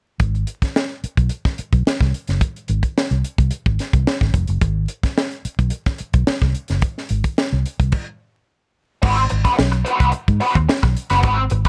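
A dry, close sound with a layer of vinyl crackle frames this energetic, strutting funk excerpt at 109 BPM, built on a single Ab7#9 chord. A dark, round, foam-muted fingered bass and a tight acoustic kit with a high-tuned snare, tight kick, hi-hat and crash sit up front, then drop out for a stop at 7.9 seconds. At 9.0 seconds an overdriven, picked semi-hollow guitar enters with wah for the closing section.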